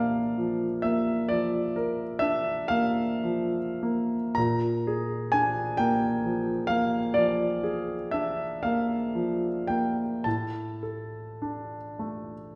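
This is a romantic classical nocturne for solo piano, a mournful and yearning fragment cut from a longer piece. A concert grand carries everything alone across its 12.6 seconds, moving in 12/8 with a freely breathing rubato. The instrument sounds clear and natural, with deep bass and a short sustain, and it sits up front, spanning A2 to Bb5. The harmony rests on Bb, darkens into Bb7 at 4.4 seconds, and reaches D5/A near the close. A wet stone room reverb with a 1.4-second decay surrounds the piano and lends the melancholy phrase a resonant sense of space.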